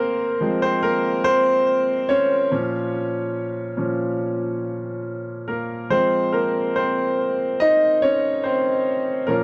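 This short piece of pop moves at a slow 71 BPM in a straight 4/4, unhurried and steady, in F minor with tuning set slightly low at A4 = 439 Hz. A clear grand piano plays alone for the full 9.4 seconds, ranging from Bb2 up to Eb5. Its tone is smooth and vintage, with long sustain, and it sits up front in the mix with a touch of delay. The harmony shifts from Fm to Bbm at 2.5 seconds and back to Fm at 5.9 seconds, giving the passage a melancholic, heartbroken mood. Light reverb and a dark, warm production surround the piano in this brief fragment cut from a longer piece.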